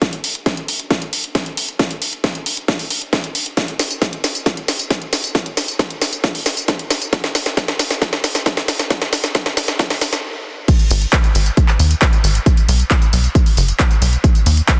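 A steady 135 BPM pulse in 4/4 drives this soaring, euphoric uplifting trance excerpt in G# minor, cut from a longer piece. A punchy, overdriven electronic kick and a layered house kit of crash cymbal, handclaps, hi-hat, cracking snare and tambourine sit up front from the start, both re-recorded in a large room. The opening build-up to 10.7 seconds is a long drum fill that halts in a brief stop before the drop. At 10.9 seconds a tight sequencer bass enters, a driving, wave-folded blend of sawtooth, square and sine with a fast-attack filter pluck, a moving notch and a mellow decay, pumping against the sidechain. The mix carries light reverb and a dense, heavily limited modern master.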